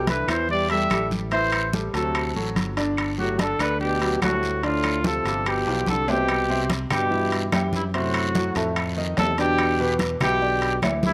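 Light reverb and a small-room ambience frame this short Afro-Cuban jazz passage, cut from a longer piece, with a sophisticated, sunny mood in a straight four. Up front, a mellow trumpet carries the melody with vibrato and a roomy, distant quality, while a dark, breathy trombone plays a whispered second line beneath it with scooped notes and a soft attack. A concert grand piano accompanies with an intimate, natural tone, deep bass and audible action noise, and a growly fingered electric bass, direct and amped, anchors the low end. The percussion joins almost at once: bright, damped congas played with soft hands and a raspy guiro sit close and dry, ringing metal-shell timbales have a vintage, band-limited colour, and woody claves sound far off in a large room. A drum fill from 5.7 to 6.3 seconds leads into a second section at 6.3 seconds, where the harmony moves through Cmaj7, F#dim, F7 and Em7.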